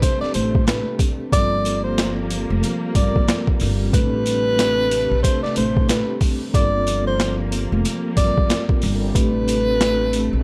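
Reflective and moody, this boom-bap hip-hop excerpt in G minor moves at 92 BPM with a swung 4/4 feel: a breathy tenor saxophone carries the subtoned, scooped-note melody through tape echo over a mellow, ringing vibraphone, bowed sul tasto strings holding soft-attack chords, and a woody pizzicato upright bass that enters at 0.2 seconds, while an up-front, pitched-down, overdriven sampler-style drum kit with a thumpy kick and high-tuned snare drives the groove and jingly sleigh bells sit in the background of a dry, gritty mix.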